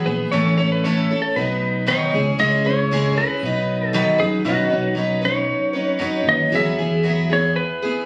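A straight, steady 4/4 pulse drives this short cut from a longer folk rock and heartland rock piece, which carries an open-road, hopeful mood. A picked twelve-string acoustic guitar sits up front from the start, its full-bodied, shimmering, octave-doubled picking marked by the odd finger squeak. Above it, a clean lap steel guitar carries the melody with a dark, compressed slide tone, while a fingered electric bass adds a round, amped low end. The harmony moves through A, B and C#m, then settles into Badd9 and Eadd9 as the second section begins at 4.5 s. There a reedy electric piano with fast tremolo slips in quietly behind the other parts and stops at 7.4 s. The sound is captured on a phone in the room, with club reverb and a moderate large-studio ambience giving it a live, roomy feel.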